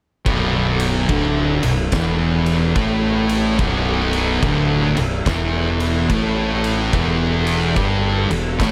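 A slow 72 BPM pulse in 4/4 swings its eighth notes, giving this brooding, ominous stoner and doom metal passage in B minor a lurching, dragging gait. Two thick fuzz guitars sit up front, both picked and distorted, grinding out a riff from low B up through the middle register. A fingered electric bass pushed through overdrive growls beneath them, and an oversized, low-tuned acoustic kit of kick, snare and ride cymbal fills the bottom with a boomy kick, fat snare, dark cymbals and a gritty, saturated edge in a bright stone room that pumps around it. All four parts play together from 0.3 s to 8.7 s, holding on B minor before shifting to E minor add 11 at 6.9 s. A small room ambience surrounds the band in this short section cut from a longer piece.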